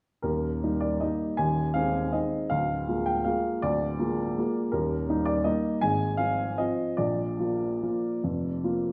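A lilting 3/4 waltz pulse drives this short classical piano passage, played with rubato so the tempo breathes between 136 and 172 BPM. The mood is graceful and elegant, set in Eb major with the tuning at A4 = 439 Hz. A solo upright piano carries everything from 0.2 to 8.9 s, ranging from D1 up to Ab5 with a warm, woody, natural tone, long sustain and an up-front presence. The harmony moves from Eb through Ab/Eb and Bb7/D, returns to Eb, then passes through Fm/Ab to close on Bb. A moderate recital hall reverb with a 1.4 s decay gives the instrument a roomy setting, and the passage reads as a fragment lifted from a longer piece.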